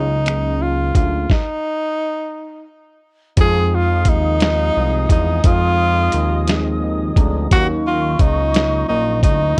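A breathy, subtoned tenor saxophone with light vibrato and scooped notes opens this sultry, late-night slow R&B excerpt in 6/8 at 58 BPM over a mellow tine electric piano and a fat, detuned sawtooth analog bass with a filter sweep. A gritty, compressed sampler-style soul kit of finger snaps, hi-hat, thumpy kick and snare joins at 0.3 seconds and halts in a stop from 1.3 to 3.4 seconds. At 3.4 seconds an airy flute ensemble enters with sustained chords as the harmony moves from Ebm9 to Fm7, and the electric piano later adds a brief fill from 6.5 to 7.5 seconds. A worn, warbling cassette-tape pitch drift and light reverb color the whole.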